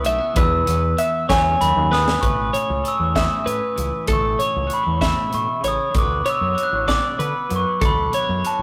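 Math rock and midwest emo in a bright, playful 6/8 at 64 BPM, cut from a longer piece, where a mellow, bell-like glockenspiel struck with soft plastic mallets carries the melody over two clean, compressed twelve-string electric guitars, one playing chords from Emaj7 through A6 to D6 and the other picking twangy arpeggios higher up. A growling fingered bass with overdrive adds punch underneath, while a crisp, polished fusion kit with a high-tuned snare and punchy kick sits up front and plays a fill from 1.9 to 2.2 seconds before the second section. The whole take has a rough rehearsal-room character, with tube saturation and a moderate stone-room reverb.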